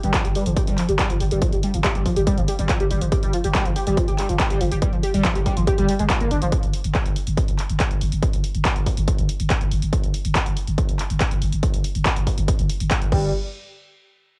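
Hypnotic and industrial, this driving peak-time techno cut runs at 141 BPM in a straight 4/4, with a distorted, layered electronic kick sitting up front, a punchy analog drum machine adding tape-warm handclaps, hi-hat and crash, and a growling, buzzy 808-style bass pumping under a low-pass filter. A gritty, screaming synth lead carries the riff from the start until 6.5 seconds, its guitar-like sawtooth tone thickened by a sub octave, ring modulation, phaser, chorus and tape echo, then returns briefly at 13.1 seconds. The home cassette recording is dry, giving the whole excerpt a raw, close feel.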